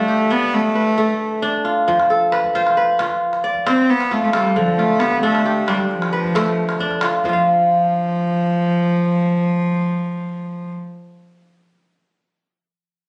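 Warm and joyful, this short cut from a longer West African string and xylophone piece in a straight 12/8 pairs a rich, reedy bowed cello melody, played close, with ringing, crisp fingerpicked kora arpeggios, both up front, while a small, saturated calabash taps in from 1.9 to 7.5 seconds over Dm and F chords before the harmony drops away at 7.3 seconds, all framed by light reverb and a phone-in-the-room sound.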